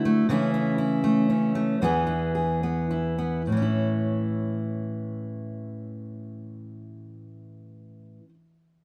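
Folk excerpt in 6/8, nostalgic and heartfelt, where a lone fingerpicked steel-string acoustic guitar sits up front with a bright, full-bodied dreadnought tone, fresh strings and audible finger squeak, easing to a slower pace over its opening 3.5 seconds as it moves through A over C#, E and back to A in a moderate studio reverb.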